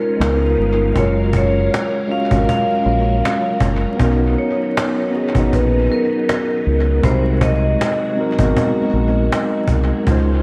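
Swung at 79 BPM in 4/4, this cosy, nostalgic lo-fi hip hop excerpt pairs a ringing vibraphone melody and an up-front, mellow tine electric piano, both low-pass filtered and steeped in dub echo, with lush phased string-machine chords, a round, dark fingered bass and a woody cajon with 12-bit grit entering at 0.2 seconds, moving from Db13 through Gbmaj7 and Cbmaj7 to Ab7 in a small room under vinyl crackle.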